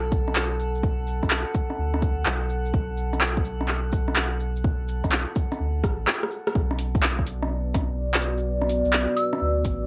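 A soft, round dub sub bass pumps under a drifting, glassy harmonics texture with chorus and reverb, while an overdriven electronic kick and a deep house kit of handclaps, metallic hi-hats, rim click and shaker sit up front with a cassette-tape grit, setting a rainy, melancholic future garage groove at 126 BPM with a heavy 16th-note swing in B minor. After a drum fill from 5.8 to 6.6 seconds the glass texture falls away, the harmony settles from B7 to B minor, and at 7.5 seconds a deep, dark, detuned ambient pad fades in with chorus and reverb, pumping against the kick. Near the close, a pure, mellow FM bell sounds a single high E at 9.2 seconds, all within a moderate booth ambience and a home-cassette sound in this short cut from a longer piece.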